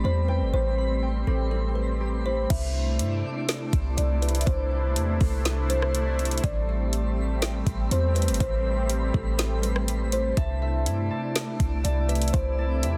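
A deep, boomy 808-style bass sits up front, its clean sine tone striking with a fast attack and decaying darkly beneath this spacious, melancholic stretch of atmospheric cloud-rap, cut from a longer piece at 122 BPM in 4/4 with a half-time feel, tuned to A4 = 442 Hz. Over it, a woody kalimba carries the melody with a hollow, ringing thumb pluck and a touch of delay, while a sweeping, resonant sawtooth pad holds airy, detuned chords with a noise layer, filter swell, chorus and sidechain pumping. The harmony alternates between Am9 and C69. A fingerpicked acoustic concert harp adds delayed arpeggios at the start, falls away at 4.4 seconds and returns at 10.4 seconds. A smooth, electronic R&B drum kit enters at 2.5 seconds, its soft kick, woody snare, rim click, metallic hi-hats and crash cymbal placed up front. In the background, a twinkling granular texture adds an FM, octave-up shimmer with its own reverb, all set in a digital ambience with a dense, heavily limited modern master.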